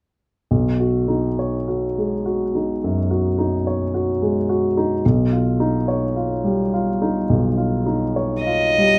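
Flowing in a free, rubato 4/4, this classical impressionist duo for violin and grand piano feels pastoral and luminous, drifting at an unhurried pace. A warm, polished baby grand carries the accompaniment throughout, spreading B69 harmony across its lower and middle registers before moving to D#9/B at 5.0 seconds. The violin arrives only at 8.4 seconds, a single bowed player holding a rich, smooth D#5 with vibrato just as the fragment closes. Both instruments sit up front, the piano slightly softer beneath the singing string tone. Close, detailed microphones and light reverb give the recording an intimate clarity, and the clip is cut from a longer piece.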